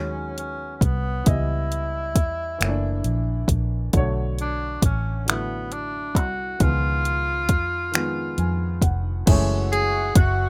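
A tenor saxophone with light vibrato carries the yearning melody up front in this slow, late-night R&B piece in 6/8 at 45 BPM, set in F# dorian. A baby grand piano with short sustain accompanies and adds a fill at 7.9 seconds, a round, foam-muted vintage electric bass sits close and punchy, and a produced electronic kit of soft kick, dark hi-hat, finger snaps and crash cymbal comes in at 0.4 seconds. A shimmering, retro pulse-width pad with chorus enters slowly in the background at 9.3 seconds on F#m7, all in a dry, rough home-demo mix.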